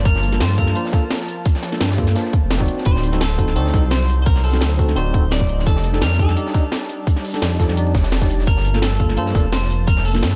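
A dark, warm mix sits in a digital ambience for this soulful, lush liquid drum and bass excerpt, led by a deep, rumbling detuned saw bass up front and a tight, overdriven electronic kick. A cracking snare and bright hats from an overdriven electronic kit ride over a gritty, high-tuned breakbeat kit with a rolled-off top tucked in the background, while a thick, warbling unison pad with sidechain pumping holds sustained chords behind. A worn, slightly out-of-tune tine electric piano plays accompaniment through a combo amp from 0.3 seconds, and a clean, picked electric guitar carries the melody through digital delay over chords moving from Gm9 through D7b9 and F13 back to Gm9.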